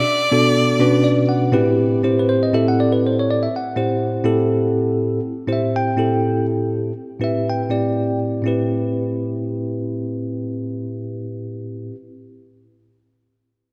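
A clear, smooth bowed violin with vibrato and delay holds a brief D5 up front over a bell-like, clean tine electric piano in this slick, funky jazz excerpt in 7/8 at 243 BPM (eighths) in A dorian, tuned to A4 = 441 Hz; the violin falls away after 1.1 seconds, and the direct electric piano, ranging from A2 to G5, plays a fill from 0.8 to 1.6 seconds as the harmony moves from Bm9 to Am9, then carries on alone, all set in a lush hall reverb with shiny 1980s-style digital production.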